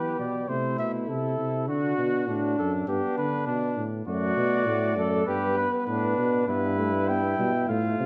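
A dark trumpet leads this elegant, lively classical canzona for brass ensemble, carrying the melody up front with light vibrato and a smooth top across the full 8.1 seconds. Beneath it, a warm flugelhorn sings a second line that sits distant and roomy, while a trombone supplies accompaniment with its own light vibrato and smooth edge. A clear tuba anchors the bass up front with a soft attack. In a straight 4/4 at 100 BPM, tuned to A4 = 437 Hz, the imitative writing moves through Am, D, G, D/F# and back to G. A moderate recital hall reverb of about 1.5 seconds lends the ensemble a natural sense of space in this brief passage cut from a longer piece.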